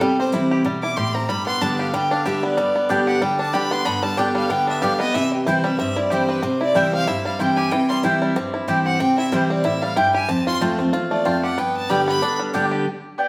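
Joyful and lively, this short cut from a longer bluegrass piece moves with a brisk swung 4/4 feel as a band plays together live in a stone room with a wet reverb. The fiddle carries a solo from the start, its clear, biting tone close and up front, with light vibrato, an airy bow and an earthy character. Underneath, a picked steel-string dreadnought guitar supplies bright, full-bodied accompaniment, the squeak of fingers on strings audible, while a twangy, percussive banjo plays fingerpicked arpeggios. A warm mandolin joins at 2.9 seconds with woody, double-stringed stabs. The harmony moves between C, G and F, coming back to G near the close.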